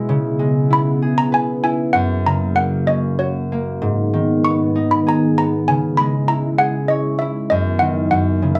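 Innocent and tender, this short lullaby fragment from a longer children's piece moves in a gentle 3/4 at 97 BPM with a loose, rubato feel. A fingerpicked concert harp carries the accompaniment from the start, its acoustic, ringing tone sitting up front across a span from F#2 to C#5. Beneath it, a warbly tape-like pad holds sustained chords with a slow attack, its detuned, lo-fi, vintage character thickened by chorus and its own reverb into a dark, nostalgic haze. At 0.7 s malleted handbells enter with the melody, soft-clappered and mellow, their damped, short, airy notes sounding between C#5 and C#6 close to the listener. The harmony drifts from C#m7 through F#, G#m and C#m before settling on B/F#, all bathed in light reverb.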